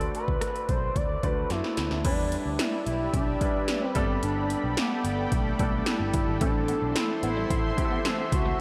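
An expressive, smooth sawtooth-and-triangle lead carries the melody from 0.2 seconds, gliding with portamento and vibrato through chorus and analog delay over a romantic, uplifting 1980s-style pop groove at 110 BPM in 4/4. Punchy electronic pad drums with a gated snare and metallic hats sit up front, a drum fill comes at 1.5 seconds, and a dark, foam-muted picked bass and a clear, polished baby grand piano with lush chorus hold the harmony moving from D through Em7 and Gadd9 to Am. A thick, detuned unison pad enters at 2.6 seconds, a slightly broken-up electric guitar riff slips in at 6.4 seconds in the background, and a huge ambient reverb soaks this dreamy excerpt.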